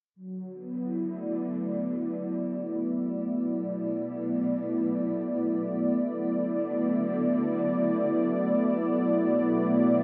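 At a straight 3/4 pulse of 62 BPM, this serene, peaceful ambient excerpt in D major centres on an up-front, smooth, detuned sawtooth analog pad that holds soft-attack chords with a long release, moving between D and Bm through chorus, shimmer reverb and a filter sweep, while a dark, distant bowed cello section with expressive vibrato fades in beneath it on the bass line, the whole excerpt set inside a huge 8.9-second ambient reverb with the character of cassette tape.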